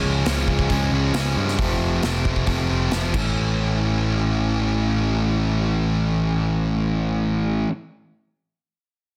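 Lightly reverberant and densely limited with a small-room air, this cathartic, anthemic quiet-loud alternative rock excerpt at 135 BPM in 4/4 puts an up-front, double-tracked fuzz guitar riff over a growly picked electric bass, moving through C#, F and A chords, while a punchy acoustic rock kit with bright cymbals drives the opening until it stops at 3.2 seconds.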